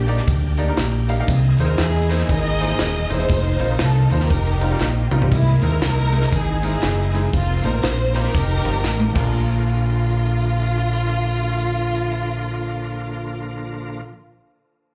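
A swung 119 BPM groove in 4/4 drives this reverent, uplifting uptempo gospel excerpt in Bb major, where lush bowed strings carry the melody over clear, worn concert grand piano, a shouting, lightly overdriven tonewheel organ with slow rotary in the background, and a round, punchy fingered electric bass up front, while a crisp fusion drum kit with a high-tuned snare and a compressed tambourine-and-handclap layer play until about 9.2 and 9.6 seconds, with drum fills at 4.8 and 8.8 seconds, all heard live through a club PA with light reverb.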